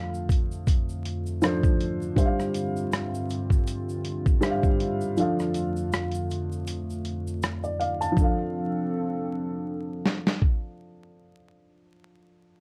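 Mellow and nostalgic, this lo-fi hip hop excerpt in F major moves at a relaxed 80 BPM with a gentle swing, wrapped in light reverb and vinyl crackle. A woody, vintage upright piano with a cassette-tape softness plays the accompaniment over a deep, detuned analog pad whose chorused, slow-attack chords move between F6 and G7sus4. A gritty, compressed sampler-style kit with a thumpy kick, rim clicks, snare and hi-hat sits up front, while a grainy tube shaker stays in the background until 8.5 s, and a break arrives at 5.2 s.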